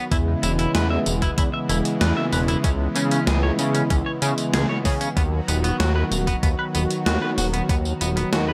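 A brassy analog pad of detuned sawtooth chords opens this moody, driving synthwave excerpt at 95 BPM alongside a bright, twangy clean electric guitar riff, with the bass and drums arriving at 0.1 seconds. The pad sits up front with a soft attack, chorus, vibrato, a filter swell and a moving notch, and sidechain pumping, while the picked, compressed guitar is bathed in lush chorus and delay. Underneath, a glossy chorused synth bass blends pulse-wave and sawtooth tones with pulse-width modulation, a filter sweep and a fast attack, also pumping against the sidechain. A thumpy, sampler-style electronic kick drum runs until 7.8 seconds, joined by a gated 80s digital drum machine supplying hi-hat, tambourine and a snare drenched in gated reverb, both with a tape-tinged, small-room character. The chords move from E6 to C#m7 to B/D# over a straight 4/4 pulse, all set in light reverb and digital ambience.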